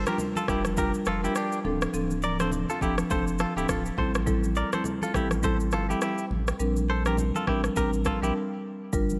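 A lightly swung 4/4 afrobeats groove at 103 BPM, driven by an electronic afro-pop kit with a deep kick, rim click and shaker, very quiet congas and a thick, saturated sub bass, sets a mellow, sultry mood in this excerpt, as an up-front woody marimba accompanies a Gm7, Dm7, Am7 and Bb69 progression while a brilliant, twangy clean electric guitar riff with tape echo plays until 8.3 s ahead of a brief break, the whole mix soaked in dreamy plate reverb.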